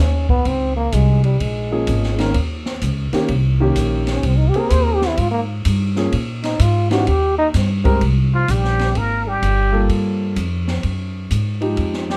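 Dark, lightly reverberant production frames this playful small-group swing and bop excerpt in Ab major at 127 BPM, where a breathy, mellow trombone with vibrato and scooped notes solos from the opening over woody pizzicato upright bass and an acoustic drum kit with dark cymbals, a high-tuned snare and a boomy kick, a short-sustain grand piano comps from 1.7 seconds, and a clear, plunger-muted trumpet with wah-wah and scooped notes takes up the melody at 8.3 seconds.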